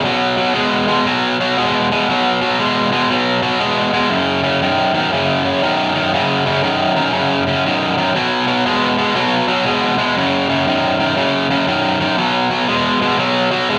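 A bright, overdriven electric guitar through a cranked stack sits up front as the soloist in this swaggering, laid-back blues excerpt in B major at 119 BPM with a swung 4/4 feel, its picked B5 and F#5 chords carrying a slapback echo and light club reverb as it is heard live through the venue's PA, with a new section arriving at 12.2 seconds.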